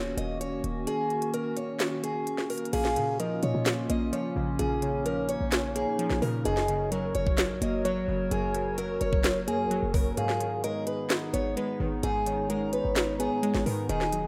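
Trap hip hop at 129 BPM in a half-time feel, menacing and eerie in Bb phrygian, this cut from a longer piece opens with a dark, boxy picked old ladder-braced acoustic guitar melody through digital delay over a warbling, nostalgic lo-fi pad with chorus and reverb, a punchy short 808-style bass and an up-front trap kit with knocking kick, sharp snare, crisp hats, handclaps and crash, whose kick drops out from 0.9 to 2.7 seconds before a soft, round octave-layered synth lead with vibrato and glassy, evolving digital keys with a filter sweep join at 2.7 seconds, all in a rough home demo mix with light digital ambience and a brief break at 10.2 seconds.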